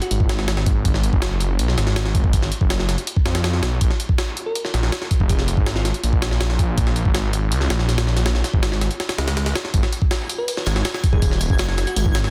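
A dense, heavily limited modern mix with little reverb carries this frenetic, atmospheric stretch of jungle-flavoured drum and bass at 162 BPM in G# dorian, moving from G#m7 to A#m7 and then to a G#7 with its third omitted at 9.7 s. Up front, a gritty, pitched-up sampler-style jungle kit with a thumpy kick and high-tuned snare drives throughout beside a thick, menacing detuned saw bass with tube saturation, while a bell-like FM electric piano drifts in the background in brief phrases coloured by chorus, cassette tape and dub echo. At 9.7 s a very quiet, dark, crunchy breakbeat kit with tambourine slips in, and from 10.2 s a twinkling granular texture adds an octave-up shimmer through its built-in reverb.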